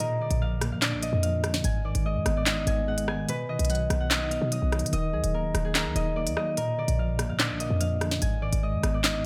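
A half-time drill groove at 146 BPM in 4/4 drives this dark, tense hip hop fragment, cut from a longer piece and running about 9.3 seconds. The electronic drill kit sits up front with a sharp snare, crisp hi-hats, handclaps and rim clicks, while a short 808-style bass enters at 0.3 seconds, punchy and tight, its sine tone carrying a noise layer with a fast attack that then decays. Over this, a Celtic harp carries the melody between Ab4 and Ab5, acoustic and fingerpicked, its ringing notes placed prominently in the mix. A mellow tine electric piano fills in the accompaniment across a broad span from Ab2 to Eb5, clean and warm as if heard through its built-in speakers. A barely audible downlifter drifts under the opening 1.6 seconds, and light reverb surrounds the whole arrangement as the chords move from Bb through Abm, B and Ebm before returning to Bb and Abm.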